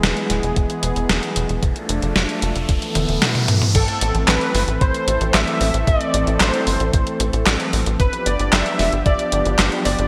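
Driving and cinematic, this synthwave excerpt moves at 113 BPM in a straight 4/4, settling into A minor from 3.8 s. A smooth, detuned analog pad holds sustained chords under a chorus shimmer and sidechain pumping, while a tight, punchy sequencer bass with tube saturation and a plucky, wave-folded sawtooth edge drives the low end up front. A clean 12-bit drum machine supplies a fat snare, handclaps, hi-hat, toms and crash cymbal treated with gated reverb, joined from 0.6 s by a thumpy electronic kick, both re-recorded in a small room. A background riser builds from 1.7 s, joined by a drum fill from 3.0 s, leading into the second section where a soft unison supersaw melody with delay enters, shadowed by a very quiet, warbling FM bell. The chords travel from E through Dm/F and Esus4 to Am, then G7, all set in a lush hall reverb with bright 1980s-style digital production.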